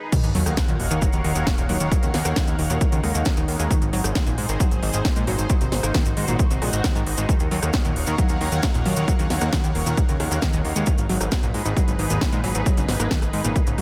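A punchy, up-front electronic kick drives this uplifting trance excerpt at 134 BPM in Eb minor, launching straight into a soaring drop where a fat, saturated analog bass, a lush, bright pad with chorus and phaser, a full-bodied pluck arpeggio with delay, a techno kit with a cracking snare and smooth hats, and grainy maracas all ride the chord changes from Ebm7 to Ab and Abm, while a background sub drop marks the impact until 1.9 seconds.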